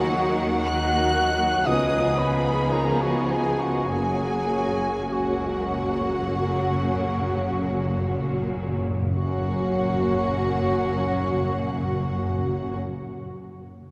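Serene and warm, this slow romantic orchestral movement in F# major unfolds at 41-59 BPM in a rubato 4/4, easing down in tempo through its opening 9.2 seconds, and it is cut from a longer piece. A violin section carries the melody high up with focused, lush vibrato, while a solo cor anglais, dark and smooth-topped, sings a prominent second line beneath it alongside a second, more distant violin section. Violas with soft attacks and portamento, an intense, bright cello section and a rich double bass section fill out the background accompaniment and bass, as a concert harp rings out very quiet fingerpicked arpeggios. At 1.7 seconds a dark, roomy French horn section enters very softly with sustained chords, and close timpani on medium mallets join at the same moment, adding a fill from 3.9 to 9.2 seconds. The harmony moves from D#m through C#9 to settle on F#, all bathed in a deep church reverb that lends the whole ensemble a spacious sheen.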